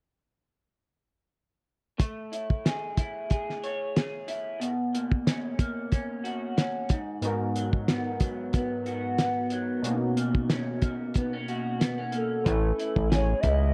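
Indie bedroom pop at 92 BPM with a light swing and a sunny, dreamy mood, this excerpt opens at 2.0 seconds with a twangy, slightly broken-up electric guitar through a small old amp, bathed in lush chorus and vibrato, over a cloth-damped, muffled drum kit with a fat snare and tight kick, before mellow, detuned analog keys join at 7.2 seconds and a hollow, woody clarinet-like synth lead with tape echo arrives at 12.2 seconds just ahead of a thick sawtooth bass, all in a dry, close 1970s-style studio sound as the chords drift from Amaj7 through G#m7 to Amaj9.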